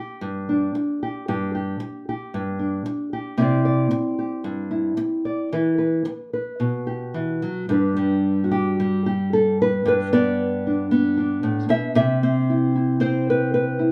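A lone nylon-string guitar, thumb-plucked, small-sounding and up front with audible finger squeak, plays a pastoral, rubato folk fragment over G, Cadd9 and Em chords, its tone set in a wet studio reverb and shifting into a second section at 7.7 s before the 13.9 s cut.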